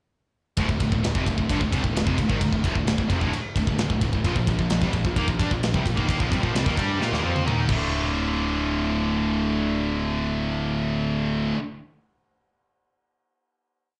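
A driving straight 4/4 heavy metal pulse opens at 0.6 seconds, with a tight, up-front drum kit of bright cymbals, medium-tuned snare and tight kick laying down a big rock groove under a relentless power-chord riff from three bright picked guitars: two distorted or overdriven parts sitting in the background, one with slapback echo, and a double-tracked high-gain part with its own slapback. A fuzzy, overdriven picked bass doubles the riff in driving eighth notes as the chords move from Dm to Bb5 and back. A drum fill at 7.0 seconds leads into a final hit from 7.9 seconds, with the drums stopping at 7.8 seconds while the guitars and bass ring on through a live club sound carried over the venue's PA.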